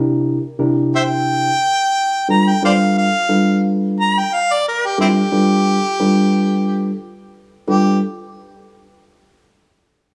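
A gentle swing on the sixteenths in 4/4 gives this laid-back, gritty blues excerpt its easy lope, as a reedy, clean electric piano, heard through its built-in speakers, sets up the accompaniment from a C7 moving to G7 at 2.3 s. At 1.0 s a warm harmonica takes the solo up front, playing in a jazz style with light vibrato, tongue slaps and scooped notes. Light reverb and a small room ambience frame both instruments closely.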